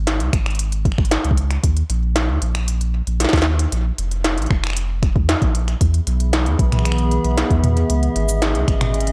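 Set in a digital ambience, this intricate, glitchy IDM excerpt moves at 115 BPM over a round, deep sine sub bass, with a soft, overdriven electronic kick and an industrial kit of cabasa, finger snaps, smooth hi-hat, clanging snare and toms sent through tape echo, before a dark, detuned and nostalgic pad with chorus and reverb warbles in at 6.1 seconds.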